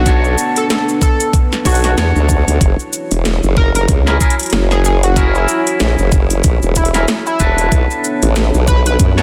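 Glitch hop at 94 BPM in B dorian with a gritty, swaggering swing, built on a knocking electronic kick and a drum and bass kit of cracking snare, metallic hats and shaker, with an up-front formant-sweep wobble bass wobbling under a tearing oscillator-sync lead with chorus, phaser and digital delay, twangy electric guitar stabs soaked in spring reverb, a moody detuned analog pad pumping in the background, and a very quiet downlifter ending at 2.6 seconds, as the chords move from Bm9 to F#7 and back in this short section of a longer piece.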